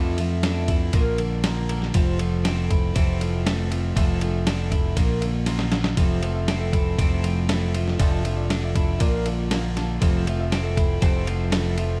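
A straight 4/4 groove at 119 BPM drives this hopeful, jangly folk rock and heartland rock excerpt in F major. The gritty, compressed sampler-style drum kit sits up front with a thumpy kick, a medium-tuned snare and ride cymbal, and a short fill at 5.5 seconds. A fingered electric bass, direct and up front, anchors the low end. A picked twelve-string acoustic guitar gives shimmering, octave-doubled accompaniment with audible finger squeak, and a bright, clean, twangy twelve-string electric guitar plays the riff over a cycle of Dmadd9/F, Bb and Fmaj7. From 6.0 seconds a reedy electric piano with fast tremolo joins in the background, adding a brief fill near 9.3 seconds. The production is dark and dry, with little reverb.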